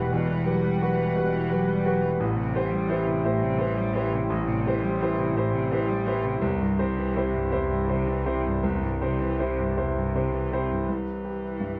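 Heard in light reverb, this reflective, melancholic neoclassical fragment in a rubato 6/8 sets a bright, brilliant concert grand piano up front, with long sustain and deep bass; a smooth, bowed cello with vibrato sings a distant second line, a bowed double bass gives a rich, even low end, and a moody, detuned ambient pad with chorus and slow attack hangs mellow in the background, all over chords that move from Emadd9 to Am7 and settle on C at 6.4 seconds.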